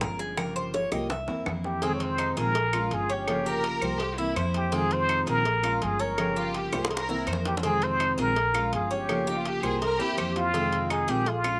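The sound is dry and close, recorded outdoors with little reverb, so every part comes through plainly in this short cut from a longer Cuban son and guajira piece in F minor, moving at a danceable 165 BPM in straight 4/4 with a sultry mood. A picked jumbo steel-string acoustic guitar gives full-bodied accompaniment, while the upright bass plays pizzicato on thumpy, dark gut strings, and tight, high-tuned bongos and cowbell struck with hard hands sit beside woody claves in the background. The Cuban tres opens with a brief solo of metallic, double-strung arpeggios touched with slapback echo, as a drum fill leads into the main section. At 1.7 seconds a plunger-muted trumpet takes the melody up front, clear and close-miked, with a jazz-style wah-wah and light vibrato. From 3.5 seconds a rich studio violin section adds an intimate, soft-attacked second line played sul tasto, also carrying slapback echo, and another drum fill arrives at 6.7 seconds. 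Underneath, the harmony cycles through Gm7b5, C7, Fm7 and Bbm7, with the warm guitar and tres keeping the groove moving.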